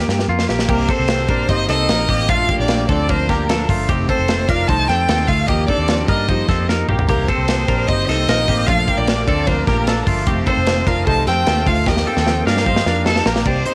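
Jangly indie pop with a nostalgic, breezy mood, cut from a longer piece and captured as a home cassette recording in a small room. A bright, twangy twelve-string electric guitar with a warbly pitch drift plays arpeggios over a dark, round, foam-muted picked bass and a punchy, up-front studio drum kit whose fills open the passage and recur along the way, while a clear, focused bowed violin with vibrato carries the melody from 0.7 seconds. Beneath them, a fingerpicked steel-string acoustic guitar sits in the background, a very quiet small nylon-string guitar adds a second line, and a silky string machine with a slow attack and ensemble chorus enters at 7.1 seconds with sustained chords over a cycle of Cm7, Bbmaj7, F7 and Ebadd9.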